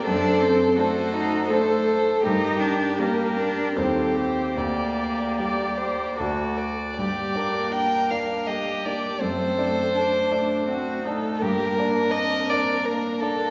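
A slow, romantic movement for piano quintet in G minor opens with the full ensemble sounding together from the first moment, its solemn, yearning mood set in a rubato 3/4 at roughly 73-85 BPM. Up front, a violin carries the melody in a pure, floating tone, bowed sul tasto with a soft attack and airy bow, while a second violin of rich, lightly vibrato-tinged sound and an intimate, close cello weave supporting lines beneath it. A clear, polished concert grand piano with deep bass and short sustain sounds present in the accompaniment, while a dark, woody viola with vibrato shares that role from further back. The harmony circles between G minor and D7 over F sharp, touching C minor and D along the way, and the music moves into a new section at 7.0 s before settling back on G minor at 11.4 s. A wet recital-hall reverb in a church or concert-hall space gives the ensemble a lingering bloom, and the top end is rolled off for a soft, mellow sheen. 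This is a brief cut from a longer piece.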